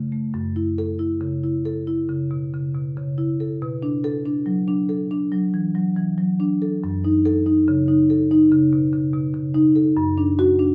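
Set in 5/4 at 93 BPM and played with a loose, rubato feel, this short contemporary classical passage for solo marimba unfolds in F# minor with a flowing, reflective mood. The marimba, struck with soft mallets, sits up front and carries the whole span from 0.0 to 10.7 seconds, ranging from F#2 up to A4. Its tone is mellow, warm, round and airy. The harmony moves through F#m7, Bm7 and F#m6 before settling on D/F#. A moderate stone-room reverb adds a sense of space around the instrument, and the clip, taken from a longer piece, feels like a reflective moment of contemplation.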